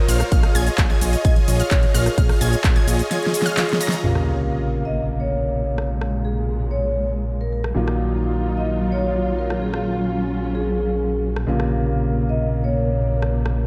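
A straight 4/4 pulse at 129 BPM drives this powerful, emotional festival progressive house piece in Bb minor, where a punchy, overdriven electronic kick and a big-room kit with a huge snare and metallic hats back a ringing vibraphone melody and a fat analog bass, while a drop of lush, sidechain-pumped supersaw chords and bright unison pluck arpeggios runs until 4.0 s, when a sub drop lands and a mellow grand piano and nasal, bowed strings take over the harmony inside a dreamy mix soaked in plate reverb.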